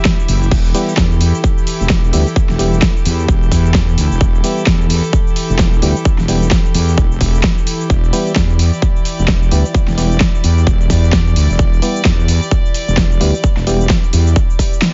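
Bass house at 130 BPM in E minor, aggressive and swaggering, with a swung 16th-note groove held on a single E minor chord throughout this short cut from a longer piece. A punchy, overdriven electronic kick sits up front beside a heavy, saturated wobble bass with chorus that pumps against it, while a big-room kit adds a huge snare, hi-hat, shaker and crash with small-room ambience. A hollow, nasal organ stab with chorus, tape colour and delay enters at 0.7 seconds, and a dark, reedy chamber string section sustains bowed chords, both pumping with the sidechain in a digital ambience that rolls off above 7.5 kHz.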